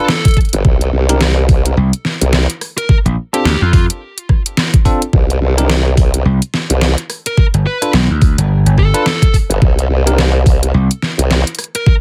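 The sound is dry and close, with a knocking, overdriven electronic kick sitting up front in this short glitch hop cut from a longer piece. At 107 BPM in 4/4 with a swung sixteenth-note feel, the mood is swaggering and playful. A pop drum kit adds hi-hat, rim click and a deep, overdriven snare, both drum layers having been re-recorded in a small room. Low end comes from two up-front basses: a formant-sweep wobble bass built from sawtooth and sine tones with chorus and overdrive, and a gritty, punchy slap bass that joins at 1.8 seconds. Above them, a bell-like tine electric piano plays clean stabs with sidechain pumping and delay, moving through Gsus2, a rootless Bbmaj7 and G9 with open gaps between. A smooth, picked lead guitar with overdrive and delay carries the melody at the start, drops out, and returns at 7.3 seconds.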